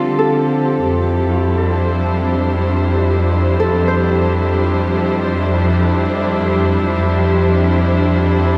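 This peaceful, luminous ambient excerpt in free time sets a rich, smooth bowed string section with light vibrato up front, sustaining chords that move from Fsus2 to C/F, while a ringing fingerpicked Celtic harp plays arpeggios in the background through diffuse delay and shimmer reverb until 6.7 seconds, and a very quiet, reedy, breathing harmonium drone sits beneath, all set in a wet scoring-stage reverb with the dulled top of cassette tape.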